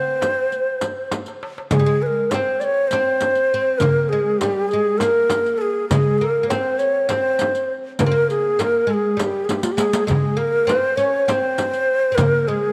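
Passionate and stately, this Turkish makam ensemble piece moves at 201 BPM counted in eighths, in a straight 7/8, and is cut from a longer piece. A breathy, end-blown reed-cane ney carries the melody between F4 and D5, close-miked and up front with vibrato and a crisp attack. Beneath it, a fretless, plectrum-plucked oud with double strings supplies a woody, deep second line from G3 to Db4. A metal-shell darbuka with a crisp tone, a small, bright frame drum and a riq with dark jingles form the percussion from 0.2 to 12.3 seconds, with drum fills at 1.1 and 9.5 seconds. A brief opening section gives way at 1.7 seconds to a longer second section, and a moderate plate reverb with a 2.7-second decay lends the ensemble a stately sense of space.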